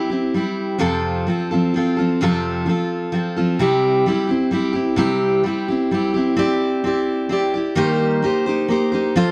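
In a straight 3/4 at 129 BPM, this short rock cut from a longer piece rests on a single picked steel-string acoustic guitar, playing alone from 0.0 to 9.3 seconds across a range from F2 to D5 in C mixolydian. The dreadnought's fresh strings give a jangly warmth, sitting up front in a dark, warm production wrapped in a moderate echo-chamber reverb. Chords move from C to F and back to C, then shift at 6.4 seconds to Cadd9 before landing on Eb6.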